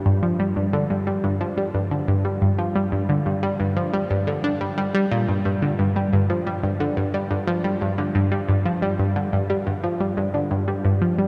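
An up-front analog pluck, round and nasal with a bright sawtooth edge, a noise layer and a fast, short filter snap, plays alone from 0.1 to 11.3 seconds in this mysterious, hypnotic ambient excerpt at 89 BPM in a straight 4/4, its chorus, phaser and tape echo spreading into a cavernous cathedral reverb with a 5.9-second tail.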